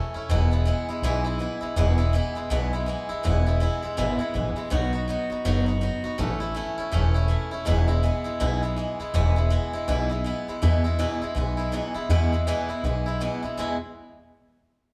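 Rockabilly with a retro, rowdy swing, cut from a longer piece, where a bright, boxy picked acoustic guitar and a woody, thumpy pizzicato upright bass on gut strings both sit up front. The guitar carries the accompaniment while the dark bass anchors the low end, moving from E through B and A back to E, before the passage shifts into new sections at 10.6 and 13.6 seconds. The band plays live in one room, with a moderate large studio reverb giving the sound some space.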